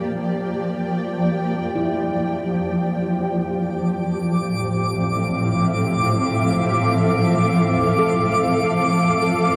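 Ambient music with a warm, weightless mood, this excerpt drifts in a dreamy haze soaked in huge reverb with a cassette-tape character. A cloudy, evolving granular pad sits up front from the start, holding full-bodied, detuned sustained chords that bloom slowly and fade with a long release, thickened by its own reverb and analog chorus. At 1.8 s a handpan joins very quietly with meditative, ringing arpeggios played with the fingertips, its nitrided-steel tone warm, vintage and band-limited. From 4.2 s a twinkling granular texture adds a sparkling, octave-up shimmer high above, swelling in gently and sustaining through its own reverb. The harmony moves from Gm7 to Fmaj7/A at 3.4 s, and the layers blur together into one suspended, glowing cloud.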